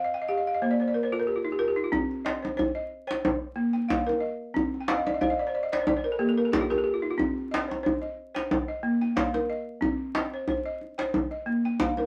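West African traditional music built on balafon and djembe, this short cut from a longer piece feels hypnotic and reflective at 91 BPM in 4/4, with a gentle swing on the sixteenths and a C dorian colour. The balafon opens alone, playing woody, buzzing arpeggios struck with hard rubber mallets that sit up front, dry and dark, ranging from Bb3 to G5. At 1.9 seconds the djembe joins, a medium-tuned drum with a vintage, band-limited character, played with hard hands and placed up front as well. The harmony circles between C minor and B-flat, with a brief passage that drops away from any chord, while the balafon adds fills during its solo opening and again between 4.8 and 7.2 seconds. A moderate studio room gives a short, natural ambience, and a layer of vinyl crackle lends the recording an aged patina.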